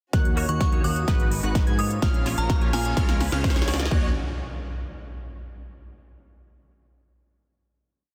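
An anthemic, powerful festival progressive house piece in Eb minor at 127 BPM opens at 0.1 s as a full build-up, with an overdriven, punchy electronic kick driving four-on-the-floor up front while a layered, programmed kit adds crisp hats and a snare backbeat through a drum fill. Huge, lush detuned supersaw chords play a dotted-rhythm riff in an open voicing under a filter sweep, and a plucky, catchy unison lead doubles them an octave higher in arpeggios, also under a filter sweep. A fat, thick analog bass locks to the chord rhythm and pumps with the kick alongside the synths and a bright, clean semi-hollow electric guitar picking dotted-rhythm chords. A glassy, crystalline FM bell adds short answering phrases, and a very quiet chamber string section holds a soft, sul tasto pad beneath it all. The harmony moves through Ebm7, Abm7, Bbm and Db, with a riser and impact entering at 1.9 s before the build resolves to a final Ebm7 chord at 3.9 s, all within a dense, heavily limited modern master.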